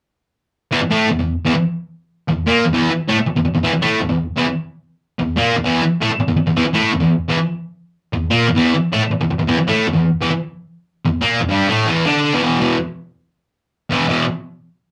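A rough rehearsal-room sound with a wet small-room reverb frames this menacing, gritty rock excerpt in E minor at 164 BPM, where a bright, double-tracked fuzz guitar, picked, compressed and distorted, sits up front taking the solo from 0.7 to 14.2 seconds between E2 and D4, landing on an E5 chord at 12.4 seconds.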